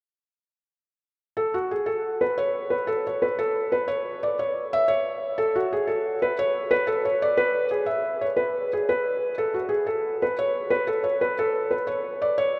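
Bright and lively, this Celtic folk fragment moves at 120 BPM in a straight 12/8, carried by a lone felt-muted upright piano playing between 1.4 and 12.6 seconds. The piano's soft, mellow, intimate tone sits up front, keeping to a narrow register from F#4 to E5. A cathedral reverb with a 6.9-second tail places it in a vast, echoing space, and the clip is cut from a longer piece.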